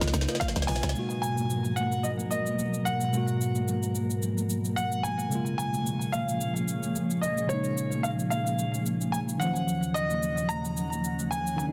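A swung 110 BPM amapiano groove from an electronic drum kit with a deep kick, woody snare and metallic hats, plus distant, ringing congas, opens with a drum fill and a punchy log drum bass that stops at 1.0 s, while a dark chorused chord stab flickers briefly, a glassy, warbling FM pad pumps beneath an up-front grand piano melody with delay, and a worn, slightly out-of-tune tine electric piano joins at 0.9 s, giving this late-night, soulful cut in G# dorian, moving through G#m9, A#m7 and D#m9, a dense, heavily limited finish.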